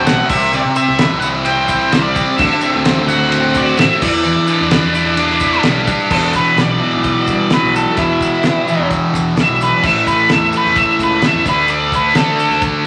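A double-tracked, bright fuzz guitar riff with phaser and a warm octave-fuzz lead guitar melody open this dark, mysterious psychedelic rock excerpt in E minor at 129 BPM, alongside round, overdriven fuzz bass, a damped 70s drum kit with a fat snare and tight kick, and grainy maracas in the background, all in a large studio reverb, as chords move from Cmaj7 through D7 to Em7 before the lead guitar takes a solo at 6.1 seconds over E5, A and D5.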